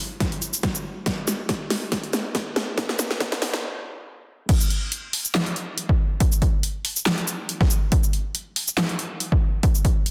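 A half-time dubstep groove at 140 BPM in 4/4, with a light 16th-note swing, drives this aggressive, chaotic fragment of a longer piece. An overdriven dubstep drum kit with a huge snare, bright hats, handclaps, shaker and crash cymbal sits up front beside a punchy, layered electronic kick drum. A drum fill carries the build-up until a stop at 3.6 seconds, and the drop lands at 4.5 seconds, all wrapped in a lush hall reverb and a dense, heavily limited master.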